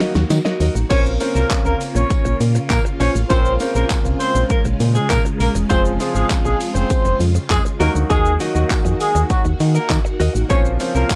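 A punchy, round FM bass sits up front in this bittersweet, energetic dance-pop excerpt in B-flat minor at 100 BPM, pumping with sidechain alongside the clear concert grand piano, the swirling, phased string machine chords and the mellow, distant horn section that carries the melody from 0.9 s. A drum fill on the electronic pop kit, with its fat snare, metallic hats and handclaps, leads into the drop at 0.9 s, while a soft pluck arpeggio plays until 0.8 s and a jingly tambourine adds a very quiet shimmer. In the background, a clean, direct-recorded electric guitar plays a compressed riff with subtle chorus, all set in a dark production with light reverb.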